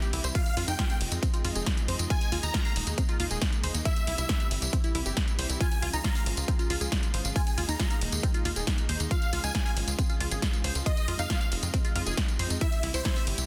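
An overdriven, punchy electronic kick sits up front in this soaring, bittersweet uplifting trance excerpt alongside an analog drum machine whose snare, hi-hat, ride and tambourine carry the same grit and a large-room sheen, while a tight sawtooth sequencer bass drives underneath with sidechain pumping. Huge, detuned supersaw chords ring out on top through a phaser and dub echo, with a very quiet, noise-flecked unison pluck sharing their register as a second line, as a tight sequenced synth spins mellow arpeggios with chorus and echo. A thick, slow-attack unison pad breathes beneath it all across a Fm7, Ebsus4, C and Db progression, in a dense, heavily limited modern master with little reverb.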